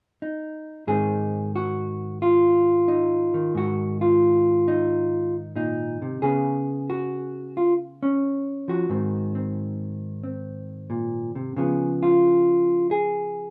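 Sophisticated and relaxed, this solo jazz excerpt swings at 90 BPM in Ab mixolydian as a dark, clean, fingered hollow-body electric guitar sits up front in a studio ambience with a short reverb tail, moving between Ab7 and Db7 from 0.9 seconds until the cut at 13.5 seconds.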